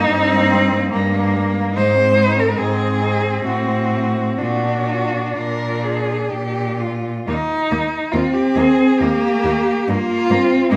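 In a rubato 3/4 at 61-74 BPM, this serene, lyrical classical excerpt for cello ensemble in Eb major sets a rich, expressive bowed melody cello with vibrato and portamento over a smooth second-line cello, a warm, gliding accompaniment cello and a close, even bass cello, all played by single players and bathed in a recital-hall reverb, as the harmony moves from Eb/G through Ab, Am6 and Bb before a new section opens on Eb at 7.3 seconds.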